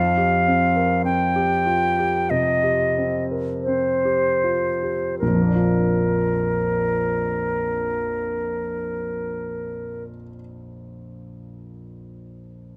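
A pastoral, dreamy impressionist duo in Bb major opens with a concert flute's pure, straight-toned, tongued melody sitting up front over a grand piano accompaniment with deep bass, both moving in a rubato 4/4 at a very slow tempo between 37 and 53 BPM. The opening passage gradually slows over a suspended F chord before settling onto Bb at 5.2 seconds. The flute falls silent at 10.0 seconds and the piano rings on alone until 12.8 seconds, all heard through close, detailed microphones with light reverb in this short cut from a longer piece.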